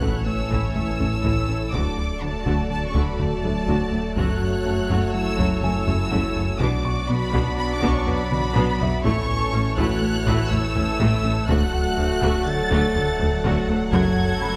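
Bathed in the wet reverb of a scoring stage, this cut from a longer hybrid orchestral and electronic film score feels vast and tense, moving at 123 BPM in a straight 5/4. A lush, bowed violin section carries the melody high above a second violin line, with vibrato and a smooth top, while violas with portamento sit in the background and distant, very quiet cellos and double basses anchor the low end beside a deep, full sine sub bass and a round, dark analog bass riff. Mellow French horns and bright trombones hold tight sustained chords in the background, joined by a very quiet airy, breathy pad with a noise layer, ring modulation and chorus. A tight, driving sequenced synth with a sawtooth filter pluck and phaser spins very quiet arpeggios, and a felt-muted upright piano adds an intimate texture with audible action noise. Heavy-stick taiko drums, compressed and saturated, sit low in the mix with a fill at 8.3 s, as an electronic impact opens the passage at 0.0 s and the impact and riser effects return at 13.9 s over a cycle of A, D, F#m and Bm chords.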